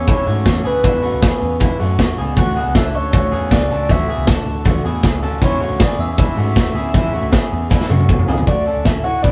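A soft, detuned octave-layered synth lead with chorus carries the melody over a sparkling glockenspiel struck with hard plastic mallets, a very quiet picked steel-string acoustic guitar, twangy, slightly broken-up arpeggios from an electric guitar through a small old amp and a dark, foam-muted vintage electric bass, with a punchy, up-front big rock drum kit joining at 0.1 s in this youthful, nostalgic jangly indie pop excerpt at 157 BPM in E mixolydian, where the glockenspiel stops at 8.1 s and a drum fill leads the move from E6 to D at 8.5 s, heard in a rough rehearsal-room recording with light reverb.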